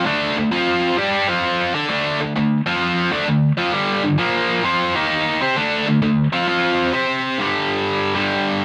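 Rock with a driving, raunchy swagger, this short cut from a longer piece is carried entirely by a tight, distorted electric guitar playing alone from 0.0 to 8.6 seconds. The picked part is double-tracked and sits up front, its gritty tone still keeping a warm core across a range from G2 up to D5. The eighth notes are swung, giving the riffing a loose, strutting feel in 4/4. The changes move through chords such as D5, F5, G5, Bb5 and Eb5, with a Dm7 appearing along the way, before a brief new section arrives at 7.4 seconds on G5. A light reverb and the sense of a band playing live in one room give the sound an open, natural feel.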